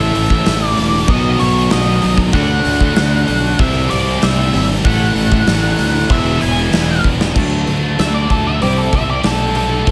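Quiet-loud alternative rock at 96 BPM in a straight 4/4, this short cut from a longer piece feels restless and anthemic, with tuning sitting a touch below standard pitch. A huge arena drum kit sits up front with bright cymbals, a punchy kick and a medium-tuned snare, driving the whole passage and marking the turn with a fill from 7.0 to 7.4 seconds. Beneath it, a fuzz fingered electric bass growls with overdrive, while a scooped high-gain guitar and an overdriven semi-hollow guitar stack their riffs, the semi-hollow part dropping out at 7.4 seconds. An octave-fuzz lead guitar carries the melody throughout and steps forward into a solo once the second section arrives. At that point a picked steel-string acoustic guitar enters in the background with tape-echoed arpeggios, adding a concert-toned shimmer under the distortion. Chords move through A, B, D, C and E, and the mix sits in a small room with light reverb.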